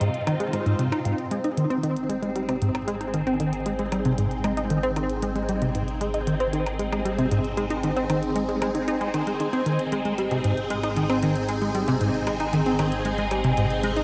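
A plucky analog bass leads this expansive, luminous piece of ambient, sequencer-driven space music, its punchy, funky riff ranging from Ab2 to Eb4 with a fast attack, filter pluck and decaying notes, colored by analog chorus and tape echo, and treated to a filter sweep in the first 1.1 seconds. Sitting up front beside it, a phased string machine holds sustained chords between C4 and Ab4, its swirling, vintage tone bright with ensemble chorus and a phaser, a soft attack and a long release. Clicky electronic hi-hats and percussion blips, overdriven and sent through tape echo, tick quietly beneath at 115 BPM in a straight 4/4. From 2.1 seconds a dark analog drone settles on a low Ab1, its chorused sawtooth and pulse-width-modulated tone slowly evolving with a slow attack and long release. Set in Ab major and tuned to A4 = 437 Hz, the passage resides in a wet concert hall reverb with cassette tape character, and it is cut from a longer piece.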